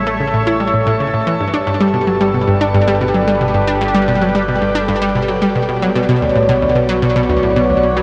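Ambient, sequencer-driven space music at 112 BPM in a straight 4/4, expansive and cosmic, where a bright, up-front analog pluck with a round, detuned sawtooth-and-square riff through chorus and delay sits beside a sweeping resonant pad of evolving, wave-folded sustained chords with chorus and phaser, over a vintage, warbling pulse-width-modulated analog drone bass that fades in across the full 8.0 seconds, the chords moving from A to Gadd9 at 1.4 s and Bmadd9 at 5.7 s, all of it bathed in a shimmering 7.3-second reverb and the worn, drifting pitch of old cassette tape in this short cut from a longer piece.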